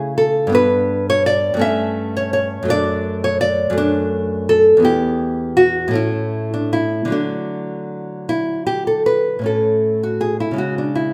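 A fingerpicked nylon-string guitar carries this short classical piece alone, its small, warm acoustic tone sitting up front in the mix. The music is a baroque-style dance in a lilting 6/8, played with a free rubato that gives it a flowing, radiant character. The harmony moves gracefully from A/C# through G and A7/G to D/F#, then passes through Em and A before settling on D at 7.1 seconds. The opening phrase returns at 9.5 seconds, and the clip ends on a bare C#5 chord, like a fragment cut from a longer performance. A wet large-studio reverb with a 1.2-second decay surrounds the guitar, giving the live room performance a spacious glow.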